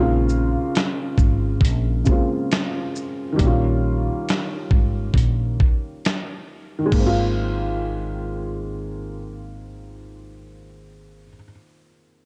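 A worn, slightly detuned upright piano, filtered and dark with audible action noise, opens this mellow, nostalgic lo-fi hip hop excerpt at 68 BPM, alongside a woody pizzicato upright bass in Ab major, moving from Bbm9 to Eb7. A gritty, compressed sampler-style drum kit with a thumpy kick, snare, hi-hat, shaker and crash enters at 0.3 seconds with a swung 16th feel, re-recorded in a large room. The kit stops at 7.2 seconds as the harmony settles on Ab6, leaving the piano and bass under a cassette-tape haze and digital ambience.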